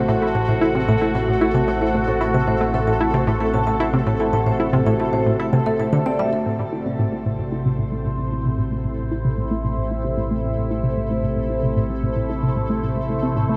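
Ambient, sequencer-driven space music with an expansive, mysterious mood, cut from a longer piece: a tight, driving sequenced synth riff with detuned sawtooth and square-wave plucks sits up front over a morphing, warbling wavetable pad with phaser, a deep analog drone and a pulsing, tempo-synced gated texture. Ringing, metallic vibraphone arpeggios with slow motor vibrato drift through until 6.4 seconds, after which the gated texture fades in and a filter sweep colours the synth while a huge, wet reverb surrounds the whole piece.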